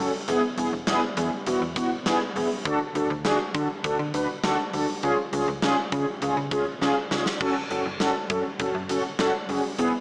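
Heard through a small-speaker filter and a moderate scoring-stage reverb, this cool, nocturnal synth-pop excerpt sets up-front, round, detuned synth brass with chorus against a snappy, metallic FM slap bass, while a huge arena drum kit with gated reverb, a punchy kick and bright cymbals enters at 0.3 seconds and plays a fill from 6.8 to 7.4 seconds as the chords move from E through D and C# to F# minor.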